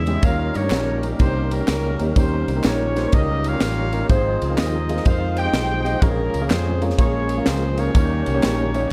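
Soulful and uplifting, this short cut of swinging uptempo gospel is led by a smooth horn section playing the melody in octaves with light vibrato and a soft attack. Underneath, a growly, punchy fingered electric bass sits up front beside a crisp, airy drum kit with a high-tuned snare, tight kick and ride cymbal, while a lightly overdriven tonewheel organ with key click and rotary speaker holds very quiet sustained chords. A mellow concert grand piano plays accompaniment in the background, and close, dry tambourine, maracas and group handclaps add a faint layer of percussion, all wrapped in a dark production with light reverb.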